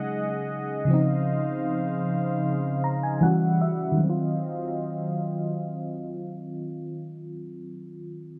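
A dark, up-front FM electric piano with tremolo and phaser carries the accompaniment in this sensual, moody contemporary R&B excerpt at 77 BPM in Eb dorian, its fast-attack, decaying tones carrying a noise layer and a fill from 2.4 to 4.0 seconds. Beneath it, a smooth, detuned sawtooth pad with chorus and plate reverb holds slow-attack chords until 7.0 seconds, moving through Ab7sus4, Dbmaj9 and Em69 to Ebm69. A filter sweep shapes the opening, and a wet small-room ambience with low-pass filtering gives the mix a soft, close sound.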